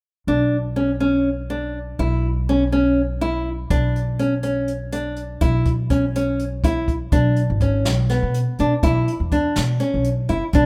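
A bright, fingerpicked nylon-string guitar with audible finger squeak plays up-front arpeggios over a woody, dark pizzicato upright bass in this driving, brooding progressive instrumental in 7/8 at 246 BPM (eighths) in B dorian, moving from Bmadd9 and Bsus24 to Dmaj7sus2, with a jazz brush kit and punchy kick entering at 3.7 seconds, all set in light small-room reverb with a rough home-demo feel in this cut from a longer piece.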